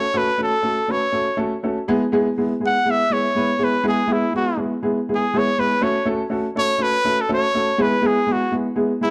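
A bright, close-miked trumpet carries the melody up front, singing with vibrato in a pop-style solo that runs the full 9.1 seconds of this short cut from a longer soul piece. Beneath it, a dark upright piano provides accompaniment, its mellow, woody tone sitting just as far forward in the mix. The music moves at a danceable 122 BPM in straight 4/4, in E major, with the harmony shifting between F#m and E, returning to F#m at 5.8 seconds. An echo chamber reverb of moderate size surrounds the playing, and the production leans dark overall. The mood is warm and easy to move to.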